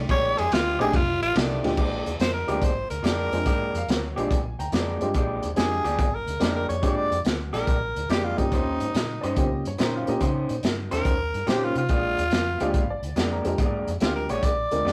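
A laid-back, soulful electric blues shuffle at 142 BPM in Bb opens with a mellow, worn grand piano, a round, foam-muted electric bass and very quiet, edgy saxophone-section stabs that stop at 1.8 s. A raspy, growling tenor saxophone takes the lead up front over a crunchy breakbeat kit with dark cymbals and a slightly broken-up guitar riff through a small old amp. A brilliant, woody upright piano with slapback echo adds a second line in the background, briefly at 3.8 s and again from 9.2 s, while the rough rehearsal-room sound carries warm saturation and moderate reverb.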